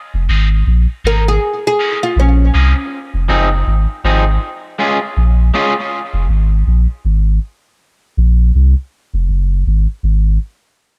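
A swung 4/4 groove at 80 BPM, loose on the sixteenths, sets up this hypnotic, heavy dub reggae fragment in Bb minor, cut from a longer piece. A round, deep sub bass carries the low end between F1 and C2, its sine-like tone landing with a fast attack and sustaining mellow and up front for nearly the whole passage. An electric guitar, bright, twangy and slightly broken-up, plays picked accompaniment through a high-pass filter and tape echo until it stops at 5.7 seconds. Briefly, from 1.1 seconds, a woody, fretless oud with plectrum-plucked double strings offers a short melodic phrase, also washed in tape echo. The harmony moves between Fm7 and Bbm7, then opens into unaccompanied bass stretches around a Bbsus2, all set in studio reverb.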